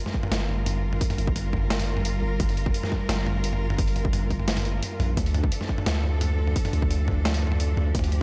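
A half-time groove in 4/4 drives this short, spacious and cinematic piece of drum and bass, cut from a longer track. A sampler-style drum kit of hi-hat, high-tuned snare and toms sounds gritty, compressed and pitched down, carrying the air of a large room while sitting up front. Alongside it, a hard-clipped electronic kick hits with a produced edge, and a deep, sine-toned 808-style bass with a fast attack holds long, decaying notes, mellow and up front in the mix. A lush symphonic cello section sustains bowed chords with smooth, even vibrato, pumping against the sidechain as the harmony moves from Gm7 to Dm at 5.2 seconds. A digital ambience wraps the whole piece in a broad, cinematic space.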